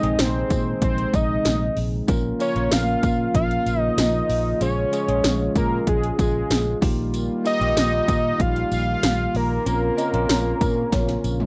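A straight 4/4 groove at 95 BPM drives this moody, urgent slice of 1980s-style pop in Bb dorian, cut from a longer piece. Electronic pad drums sit up front with a punchy kick, metallic hats and an overdriven, gated snare, with gated reverb on the snare and toms, and a fill closes things out at 10.9 seconds. A dark, round, foam-muted electric bass anchors the low end, while a jingly tambourine sits behind the kit and a bell-like tine electric piano supplies bright, clean accompaniment. Over a smooth, detuned analog pad with a slow attack and chorus, a fat sawtooth lead carries the melody with a sub octave, vibrato, a filter sweep, chorus and slapback echo. The harmony moves from Ab/Bb through Bbm, Db/Bb and Ebadd9/Bb to Bbmadd9, and a woody, soft-mallet marimba adds a brief second line at 10.0 seconds. The sound is dry and close, like a 1970s-style studio recording with little reverb.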